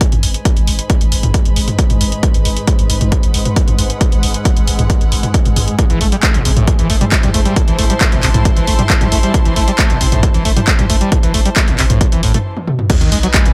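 Relentless and driving, this peak-time techno passage runs in a straight four, cut from a longer piece. A layered, punchy electronic kick sits up front beside a tape-warm analog drum machine playing crash cymbal, handclaps, hi-hat and toms, both re-recorded in a small room. Underneath, a growling, buzzy 808-style bass with a low-pass filter pumps against the kick, while a tense, granular, detuned drone swarms in the background and a dark, bowed string section fades in with intimate sul tasto tone and light vibrato. At 5.8 seconds a screaming, squelchy acid line enters, its resonant sawtooth sound distorted, bright and touched with subtle chorus and tape echo. A brief stop and drum fill lead to an impact at 12.9 seconds, where a sub drop lands in the background. The mix stays dry, with sidechain pumping giving the drone, strings, bass, acid line and the drum machine's hats, toms and cymbals a breathing push.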